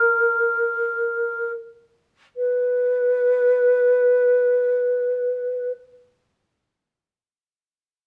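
A dark studio sound with a wet reverb frames this brief, lyrical and serene classical fragment for unaccompanied wooden-headed alto flute, played freely and expressively in 6/8 at a very slow, rubato 19-31 BPM (dotted quarters). The flute sounds airy and warm, with vibrato and tongued notes, at once distant and up front, as it hovers between A#4 and B4, slows over the first 2.4 seconds and falls silent at 5.7 seconds.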